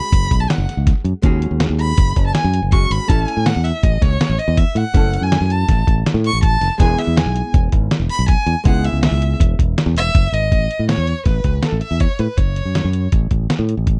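A lo-fi, sampler-style drum kit sits up front in this bright, driving progressive instrumental. Its compressed, pitched-down sound gives a muffled, thumpy kick, a medium-tuned snare and hi-hat that carry the uneven 5/4 meter with a straight feel. A fingered electric bass sounds warm, direct and punchy, also prominent in the mix. A bowed violin carries the melody as a solo until 10.5 seconds: one player, expressive, with vibrato and portamento, sounding distant against the rhythm section. A clean, dark, picked hollow-body archtop guitar holds the accompaniment in the background until 10.5 seconds, as the chords move from F#sus2 to A and E, then return to A when a new section begins. The dry, close 1970s-style studio sound runs to 14.0 seconds, where this cut from a longer piece ends.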